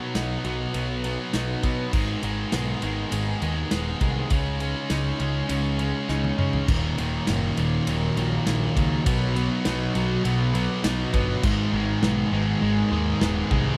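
A very quiet, ethereal pad of detuned, slow-attack sustained chords opens this cinematic, melancholic post-rock excerpt at 101 BPM in 4/4, joined at once by background arpeggios from a clean, direct-recorded electric guitar with tape echo and a bright, overdriven guitar riff. A loose indie drum kit with dark cymbals, a medium-tuned snare and a tight kick, heard in a small room, drives the build-up alongside a fuzzy, overdriven picked bass. The harmony moves through B, Abm and Dbadd9 before a drum fill at 6.1 seconds leads into Ebm. At 6.7 seconds a thick, dark fuzz guitar riff enters as the loudest part and adds weight as the chords cycle back through B and Abm. Light reverb places the band in a shared space, and the passage is cut from a longer piece while still rising.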